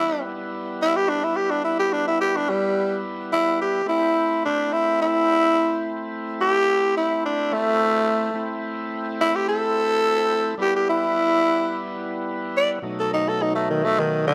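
A moderate plate reverb with a 2.4-second tail gives this smoky, soulful blues fragment, cut from a longer piece, a lingering sense of space. Up front, a growling tenor saxophone carries the melody as a jazz-style solo from start to finish, its tone breathy and raspy with scooped notes, while an overdriven tonewheel organ sits lower in the mix with a full, thick sound through a slow rotary speaker. At a straight 107 BPM in E minor, the harmony moves from Em to Am at 3.9 seconds, back to Em, and closes on B7 at 12.8 seconds.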